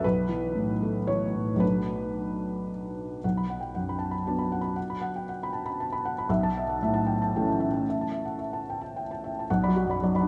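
Reflective and melancholic, this short fragment of neoclassical minimalist piano drifts in a flexible, rubato three-beat metre. A lone felt-muted upright piano carries everything from 0.0 to 10.3 seconds, its tone soft, mellow and intimate, placed up front so the listener feels close to the hammers, while its span reaches from B1 to B5. The harmony moves gently from A/B to Bm7 and then settles on Bm at 3.2 seconds, where a new passage begins. A/B returns at 6.3 seconds before the music comes home to Bm at 9.5 seconds. The sound sits in a church or concert hall, and a wet recital hall reverb with a 1.4-second decay surrounds the hushed piano with a lingering, spacious halo.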